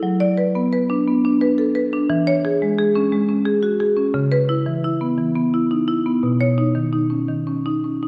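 A solo marimba with padauk bars, struck with medium hard mallets, carries this contemporary classical excerpt, its woody, dark tone sitting up front while a wet scoring-stage reverb adds a long tail around it. The mood is warm and playful, moving at 86 BPM in a rubato 3/4 in B major, with the marimba ranging from B2 to D5. The harmony passes through D6/F#, E6 and C#m7 before settling on Badd9 at 6.2 seconds, all carried by the instrument's smooth, percussive voice.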